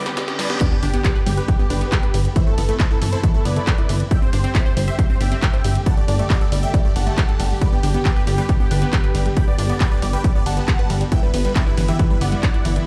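Opening on a brief drum fill with a background riser, reverse cymbal and sub drop that land on the drop at 0.6 seconds, this euphoric uplifting trance excerpt in G major at 137 BPM drives forward on an overdriven, up-front electronic kick and a dry, punchy analog drum machine with crash, ride, hi-hat, handclaps and snare, while a funky, wave-folded plucky analog bass pumps on G1, a detuned supersaw stab carries the melody through phaser and delay, a round, bright analog pluck spins chorused arpeggios, and a soft-bowed studio string section holds sustained chords in the background, all ringing out in a bare stone room over a progression moving from Em7 through G, Amadd9/G, Csus2/G and Dsus4/G.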